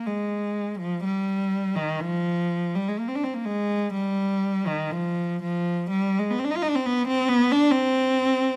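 Yearning and lonely, this brief classical fragment for unaccompanied cello unfolds freely with expressive rubato, the single bowed cello rich, smooth and even with vibrato, sitting up front in close, detailed sound with light reverb as it moves between Eb3 and F4 across its 8.6 seconds.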